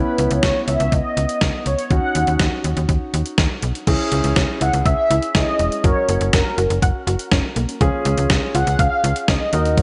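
A mellow, brassy synth lead with chorus and vibrato carries the melody in this driving, cool synth-pop excerpt, set over an intimate grand piano with audible action noise and a snappy, metallic FM slap bass. A thumpy, sampler-style 12-bit drum machine with gated reverb enters at 0.2 seconds, and from 3.9 seconds a soft, round pluck adds background arpeggios through chorus and analog delay. The mix sits in light reverb with a rolled-off top end.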